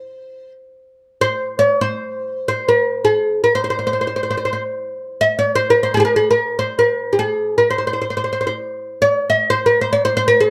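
A dark, warm production with light reverb places a lone oud up front, its woody, deep voice filling the short 10.5-second fragment cut from a longer piece. The music belongs to the Arabic maqam tradition, unfolding in free time in maqam huzam on C, tuned to A4 = 439 Hz. The fretless oud plays solo throughout, its double strings plucked with a plectrum. The melody stays within a compact span from G4+40c to E5-50c, its microtonal inflections sitting naturally within the maqam. The mood is stately and warm, carried by the acoustic instrument alone from start to finish.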